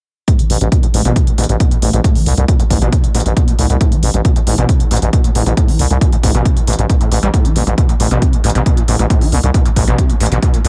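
A steady, straight 4/4 pulse at 136 BPM drives this hypnotic slice of peak-time techno in A minor, cut from a longer piece and resting on a single A minor chord throughout. A heavy, layered electronic kick sits up front, re-recorded in a large room, while smooth, tape-warm electronic hi-hats ride beneath it with a small-room character. Underneath, a growling FM bass holds the low end between A1 and C2, thick and sustained with a fast attack, its tube saturation and sidechain pumping keeping it prominent in the mix. Over this, an overdriven acid bass riff between G2 and G3 carries the hook, squelchy and resonant with a gritty sawtooth bite, shaped by distortion, lush chorus, analog delay, sidechain pumping and a filter sweep that runs from 0.3 to 10.7 seconds. The mix is dry on reverb but echo-heavy, giving the driving loop a close, insistent feel.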